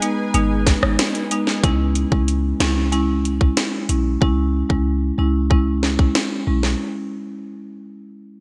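An up-front island pop drum kit drives this bouncy, hypnotic dancehall excerpt at 93 BPM in a straight 4/4, its electronic kick tight, snare sharp and hats metallic, all roughened by vintage 12-bit sampler grit and a gated reverb. Beneath it, a deep, boomy 808-style bass with a sine core, a noise layer and a fast, decaying attack arrives at 0.3 seconds and sits dark and close in the mix. A marimba struck with medium mallets carries the accompaniment throughout in a warm middle register, also placed near the front. At the start, a lush, thick unison pad of detuned sawtooth voices adds a nasal shimmer through chorus and sidechain pumping, sustaining over G#m with a slow attack until it stops at 1.6 seconds, where the harmony moves to C#m. The whole piece is set in a moderate plate reverb with a bright 1980s-style digital sheen, and it is cut from a longer work.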